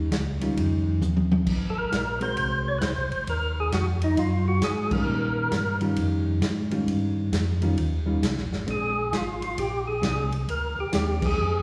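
Soul jazz organ trio in a soulful, greasy swing at 133 BPM in Eb mixolydian, cut from a longer live gig heard through the venue's PA with recital hall reverb, where a dark, round tonewheel organ plays the bass line through slow rotary speaker and chorus vibrato, a clean, fingered hollow-body jazz guitar comps with slapback echo, a punchy, rolled-off acoustic drum kit adds a fill at 1.0 seconds, and a fat, lightly overdriven percussive organ with key click carries the melody from 1.7 seconds over Eb9, Ab9 and Bb9 chords, with band accents at 4.8 and 11.2 seconds.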